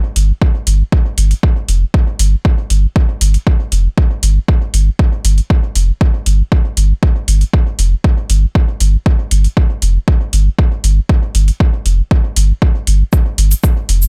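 A straight 4/4 pulse at 118 BPM drives this deep, hazy dub techno excerpt, cut from a longer piece. An up-front electronic kick drum, layered and overdriven with a deep, room-colored weight, anchors the groove from 0.4 seconds. Above it, an electronic hi-hat and shaker add metallic, gritty shimmer, sitting lower in the balance and carrying the same large-room re-recorded character. Beneath both, a round sine sub bass hovers between F1 and G1, its fast attack and sustained tone pumping against the sidechain. The overall mix stays dry, letting the hazy low end and driven percussion fill the space.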